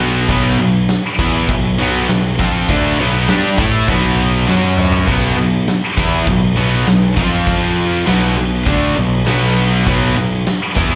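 Hard rock in B phrygian at 100 BPM, menacing and aggressive, heard as a live gig through the venue's PA with light club reverb. A high-gain distorted guitar carries the riff up front, backed by a scooped, compressed distorted electric guitar in the background and a very quiet, double-tracked overdriven electric guitar, while a dark, round fuzz picked electric bass sits forward beneath them. A huge arena drum kit with a fat snare, punchy kick and bright cymbals enters at 0.3 s and plays a fill at 4.5 s, as the chords move from Bm through F#5, B5 and F5 before returning to Bm.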